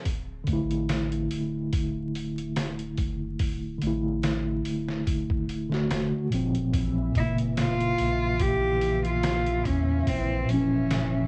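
A dark, bowed cello with vibrato and an airy sul tasto tone carries the melody from 7.2 s in this brooding, smoky trip hop piece at 72 BPM, over a mellow tine electric piano with tremolo, a deep, round dub sub bass, a gritty, pitched-down sampler-style drum kit with a thumpy kick and studio reverb, and a vintage string machine of cellos with phaser and ensemble chorus that enters at 6.7 s as the harmony moves from Dsus2 to Bbm, the whole home recording carrying cassette character and vinyl crackle.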